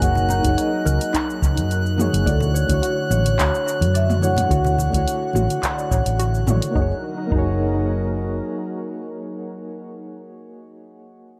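A round, hollow-body electric bass sits up front in this relaxed sunset chillout piece in F# major at 107 BPM, cut from a longer work, joined by a dry, tape-toned electronic kick and a layered deep house kit of cabasa, handclaps, dark hi-hat and toms. A mellow soft-mallet vibraphone carries the melody with gritty sampler character and dub echo, over chorused, tremolo-laden synth keys, a breathy detuned pad, a background wave-folded pluck playing arpeggios, very quiet hand-struck congas and a glassy, drifting harmonic shimmer high above. The harmony moves from F#6 to Dmaj7 at 2.3 seconds and returns to F#6 at 6.8 seconds, with the keys lingering until 11.4 seconds in an echo-heavy mix with light reverb.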